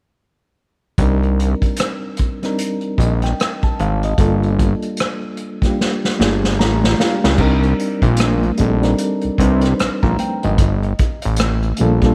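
A fat, saturated analog bass with a detuned sawtooth edge sits up front in this smooth, late-night neo-soul excerpt at 75 BPM, swinging its 16ths in C dorian over Cm9 and Gm9 chords. A mellow, reedy electric piano with fast tremolo accompanies an acoustic drum kit played with bundle sticks, its dark cymbals and tight kick sounding distant and roomy, and the drums and piano both play fills leading into the second section at 7.4 seconds. There, very quiet, high-tuned congas with a ringing tone join from afar, and the mix carries light reverb and small room ambience.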